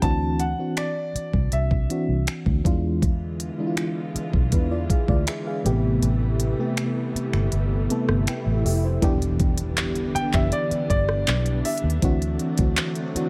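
A mellow, tremolo-laden FM electric piano carries this moody, sensual contemporary R&B excerpt in a dry mix, over a dark, round, foam-muted fingered bass and an up-front electronic drum kit of knocking kick, smooth hi-hat, rim click, finger snaps and handclaps, while a lush bowed string section with sidechain pumping enters at 3.0 seconds, a clear, intimate grand piano with audible action noise sketches a melody at the start and again from 10.2 seconds, and a background electronic swell leads into an impact at 9.0 seconds after the kick briefly drops out.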